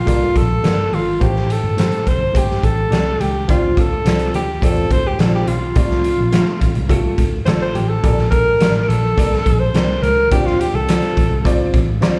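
A mellow alto saxophone opens the excerpt at 0.0 seconds, carrying a jazz-style solo up front with vibrato, scooped notes and a slapback echo, while the rest of the band enters at 0.1 seconds. This is uptempo 1960s-style soul in D minor at 106 BPM in a straight 4/4, with an urgent, driving mood. A dark upright piano gives woody, slightly detuned accompaniment with audible action noise and its own slapback echo, alongside a foam-muted, picked electric bass that sounds round and amped. The raw garage drum kit of kick, snare and hi-hat sits up front, saturated and gritty, with a fat snare, a punchy kick and a rolled-off top. The harmony moves through Bbmaj7, Am7, Dm7 and F6 before returning to Bbmaj7 and Dm7, and the whole performance sounds like a live gig heard through the venue's PA, wrapped in club reverb.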